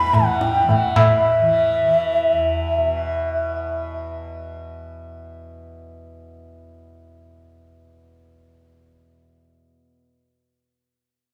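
Bathed in a lush recital-hall reverb, this solemn, longing Hindustani classical fragment at 109 BPM sets an airy, mellow bansuri with vibrato up front over a buzzing, shimmering tanpura drone, joined by a low-tuned, ringing, saturated tabla until 1.2 s, with the tanpura sounding alone from 3.9 s, when the bansuri stops, until 9.9 s.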